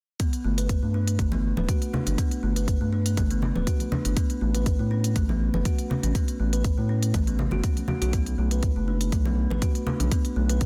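Afro house at 121 BPM with a light 16th-note swing and a spiritual, warm mood, built on a deep up-front electronic kick, smooth layered hi-hats, low-tuned thick-skinned congas entering at 1.3 seconds, and a round, dark analog bass pumping under the sidechain, while a woody, ringing kalimba plays mellow arpeggios through digital delay over Gadd9, A and Bm7 chords in a dry, dense, heavily limited mix cut from a longer piece.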